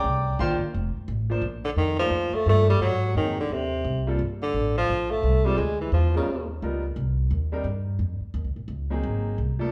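A swung 4/4 pulse at a brisk 174 BPM drives this short fragment of small-group jazz in Bb major, moving between swing and bop with a sophisticated, playful air. The upright bass is plucked and up front, its woody, thumpy tone anchoring the low end from the first moment. A clear baby grand piano comps throughout, intimate and natural, with audible action noise and long sustain ringing under harmonies such as Bbmaj7, Gm11 and G7alt. The tenor saxophone carries the melody only from 1.6 to 6.5 seconds, a roomy solo voice with light vibrato, punchy attacks and scooped notes. The band plays live together in one large studio, wrapped in a wet reverb that gives the whole group a sense of space.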